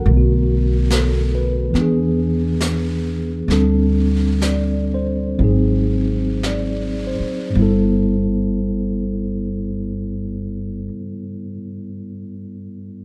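This jazz ballad excerpt has a tender, late-night mood, set in G major with a gentle swing on the eighth notes and a slow pulse between 51 and 73 BPM that eases back over the opening passage. A clean tine electric piano heard through its built-in speakers sits up front with the accompaniment, moving through Bm7, E7, D7sus4 and Ab7 before settling on a G69 chord at 7.6 seconds. Beside it, a woody, thumpy upright bass with gut strings is plucked low and close. A brush kit plays softly further back, its smooth strokes on a medium-tuned snare and hi-hat giving a gentle sense of time. The drums fall away at 8.5 seconds and the bass at 10.9, leaving the electric piano alone to close the excerpt. A moderate studio room and a dark, warm production keep the whole passage intimate and subdued.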